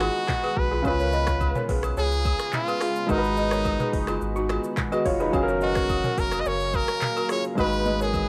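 A straight 4/4 afrobeats groove at 107 BPM in G# dorian carries this smooth, hypnotic excerpt, where a brilliant, forceful trumpet sings the vibrato-laden, scooped melody up front with analog delay over clear, intimate grand piano with audible action noise, a woody, buzzing balafon riff, a round sine sub bass, an ethereal detuned pad in the background, an electronic afro-pop kit with deep kick, metallic hats, snaps, claps and toms that opens on a break and closes with a drum fill at 7.6 seconds, and saturated agogo bells, all moving from G#m7 to C#7 and back within a small-room cassette sound.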